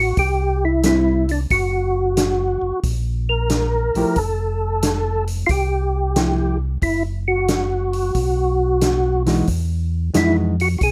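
A swung 4/4 groove at 90 BPM drives this greasy, bluesy soul jazz organ trio excerpt, its chords moving from Am7 through Fmaj9 to Emaj9. A percussive tonewheel organ carries the melody up front with third-harmonic percussion, chorus vibrato and a slow rotary speaker, while a second, round-toned organ with audible key click holds down the bass through its own rotary speaker. A vintage drum kit with a punchy kick, medium-tuned snare and hi-hat enters at 0.2 seconds, and a dark, clean hollow-body jazz guitar, played with the fingers, adds accompaniment from 0.8 seconds, the whole captured with light reverb and close, detailed miking.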